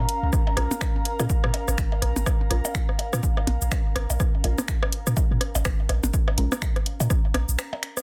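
A swung 4/4 groove at 124 BPM drives this clinical, hypnotic minimal techno in Bb minor, resting on a single Bbm7 chord. A dry, punchy electronic kick sits up front beside a deep sine sub bass with a pitch-drop attack, tube saturation and sidechain pumping, while a layered garage kit of finger snaps, hi-hat and shaker adds warm hats with soft clipping on the snare. Tape-tinged electronic rim clicks and percussion blips carry a delay, and from 0.6 seconds a muted, detuned sawtooth dub chord stab plucks through a moving notch filter, phaser and delay in the background. Underneath, a very quiet granular drone swarms on Db4 with tense unison detuning, and a warbling, nostalgic lo-fi pad blends sawtooth and triangle waves through chorus, phaser, built-in reverb and sidechain pumping. The bass stops at 7.6 seconds for a brief break, and the dense, heavily limited master carries a light reverb, with studio ambience around the drums.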